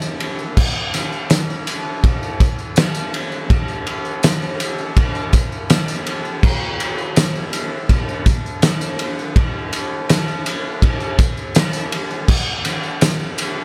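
A straight, unhurried 4/4 rock groove drives this wistful, dreamy fragment, where a loose, up-front indie drum kit with a punchy kick, fat snare and dark crash and ride cymbals breathes in a pumping studio room with light reverb, while a jingly, vintage-toned tambourine sits faintly in the background from the opening second to the end.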